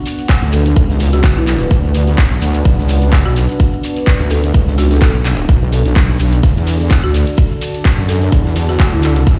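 Bass house with a bouncy, gritty mood and a light swing, taken from a longer piece. An evolving, detuned pad opens the clip with sustained chords, its resonant sawtooth tone bright and grainy from vintage 12-bit sampler grit, with chorus, phaser and sidechain pumping. A layered house kit of handclaps, hi-hat and ride, tape-warm and re-recorded in a small room, comes in at 0.1 s, and a tight, up-front electronic kick arrives at 0.3 s. A very quiet acoustic kit adds hi-hat and a medium-tuned snare, while a close, dry shekere sits in the background. The heavy wobble bass carries the low end, saturated and compressed with chorus and sidechain pumping, and a woody, rustic marimba played with medium mallets adds a delayed melody farther back in the mix. The harmony moves from B minor to D at 6.4 s, and the whole track rings out through a big sound system in a bare stone room.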